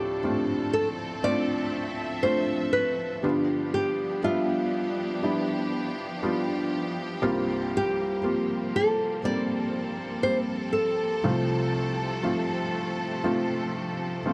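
A fingerpicked nylon-string guitar carries the full-bodied melody of this heartbroken, emotional pop ballad fragment, set up front beside a soft, boxy felt-muted upright piano accompaniment, while a lush, bowed studio string section with vibrato sustains the chords beneath, all within a light reverb and small room ambience.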